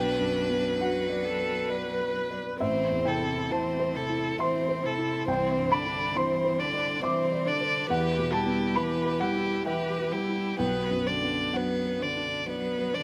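From the first moment, a felt-muted upright piano, soft and boxy with audible action noise, sits up front beside a smooth, rich solo violin carrying the melody with vibrato, while a focused, distant viola fills in the accompaniment and a distant cello adds an even, bowed second line. This fragile, reflective neoclassical piece for piano and strings moves in a rubato 3/4 with uneven beats, passing through Bm, Am, Cadd9 and Em before returning to Bm at 10.6 seconds. Close, detailed microphones capture the intimate playing inside a moderate recital hall reverb, and the passage is cut from a longer work.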